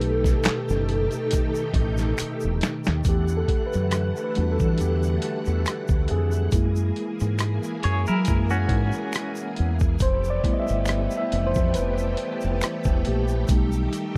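A mellow tine electric piano carries this introspective, soulful neo-soul R&B piece at 69 BPM with a light swing, taking a solo from 3.1 s over rich extended chords, while a hollow, woody square lead sings a brief chorused melody with slapback echo at the opening. Gritty, compressed boom bap drums with a thumpy kick and handclaps sit up front beside a round, dark fingered electric bass, as a tube shaker and finger snaps add faint percussion and a shimmering string machine of violins holds sustained chords beneath. A bright, clean electric guitar with tremolo slips in a short second line at 7.8 s, and the whole cut has a dry, close 1970s-style studio sound.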